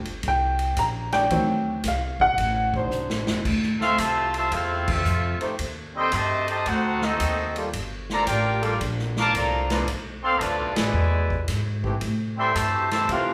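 A swung 4/4 big-band groove opens with an intimate, slightly detuned upright piano, its action noise audible, over thumpy pizzicato upright bass and a natural drum kit with dark cymbals, while a soft-attack trombone section slips in with sustained chords. After a drum fill, a brilliant, vintage-toned trumpet section takes the melody at 3.8 seconds, a nasal, straight-muted trombone section carries a second line beneath it, and the band hits accents at 4.8 and 10.7 seconds. The mood is sultry and dramatic, with the players sharing one large studio room soaked in reverb, in a clip cut from a longer piece.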